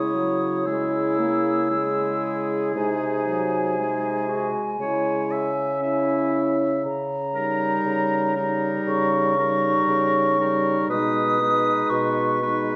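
Classical wind quintet music in a slow, romantic vein, this melancholic and yearning passage in G-sharp minor moves at about 59 BPM in 4/4 with a flexible rubato feel, its harmony drifting from C-sharp minor and settling on G-sharp minor over B near 10.9 seconds. A pure, mellow flute carries the expressive melody with a straight tone and soft attack, while a clear, lightly vibrato oboe sits close by on a second line. A bright clarinet and a distant, roomy French horn fill in the accompaniment above a dark, smooth bassoon bass that sits up front, all five heard together throughout and bathed in a wet recital hall reverb.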